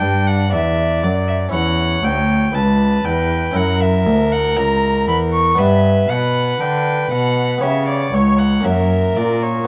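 In a steady, straight 4/4 at 59 BPM, this excerpt from a baroque-style sonata movement with continuo unfolds in a grave yet flowing mood, tuned slightly below modern pitch at A4 = 439 Hz. Two violins play throughout its 9.7 seconds: the first carries the melody high in its range with a dark, reedy gut-string tone in period style, while the second traces a lower supporting line with a nasal colour and a smooth top. Beneath them, a rich cello holds the bass with light vibrato and sits prominently in the balance. An Italian-style harpsichord with a round, plucked sound fills in the accompaniment across a broad span of its range. The harmony moves from D through Em13, F#7, G and C#m7b5 before settling back on F#7, a passage cut from a longer piece and captured with close, detailed microphones in light reverb.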